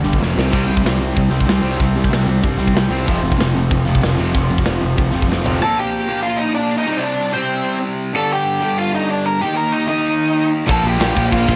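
Aggressive and urgent, this punk rock fragment drives at 189 BPM in a straight 4/4, with a compressed distorted electric guitar riffing up front throughout, a biting double-tracked overdriven guitar and a sludgy guitar filling out the background, a punchy fuzz-toned picked bass, and a tight metal drum kit with bright cymbals and fills pushing everything forward until 5.6 s, when a dark lead guitar through a small cranked amp steps in with a melody over Bb, C5, Gm and Eb before the full band crashes back in at 10.7 s.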